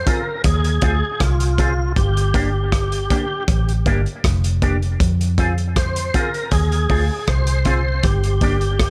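A round, foam-muted electric bass sits up front in this laid-back roots reggae excerpt alongside a lightly overdriven tonewheel organ carrying the melody through chorus vibrato, slow rotary speaker, tape echo and plate reverb, joined by a crunchy, saturated breakbeat kit of punchy kick, hi-hat and rim click and a bright, twangy envelope-filtered guitar colored by analog chorus, tape echo and plate reverb, all set in a dry room sound.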